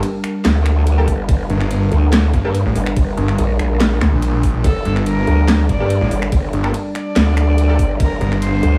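Heavy and chaotic, this half-time wobble dubstep excerpt sets an up-front growl bass, wobbling through a formant filter, against a snarling detuned saw bass that joins at 1.5 s, an overdriven, knocking electronic kick and a dubstep kit with a huge snare and metallic hats, while a morphing wavetable pad sits in the background, a bright orchestra-hit-like synth stab punches in with tape echo, and an intimate bowed cello with light vibrato and gritty 12-bit sampler texture enters at 4.6 s.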